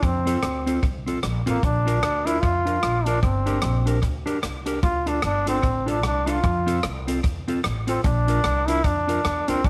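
A swinging 4/4 pulse at 150 BPM drives this short ska excerpt, its eighth notes pushed into a loose lilt that gives the whole thing a mischievous, forward-leaning energy. A swinging big-band drum kit sits up front from the start, with a punchy kick, hi-hat and rim clicks carrying an airy, polished hall sound and a touch of tape echo. Beneath it, a pizzicato upright bass with steel strings thumps and growls in a woody low register, moving through a progression of F, Bb, Gm and Dm before returning to F and Bb. A bright trombone takes the solo melody, sitting forward in the mix with light vibrato and scooped notes in a pop-styled delivery. A mellow electric guitar, dark, clean and fingered, fills in accompaniment just after the opening at 0.3 seconds, colored by a vibrato effect, all within light reverb and a studio ambience.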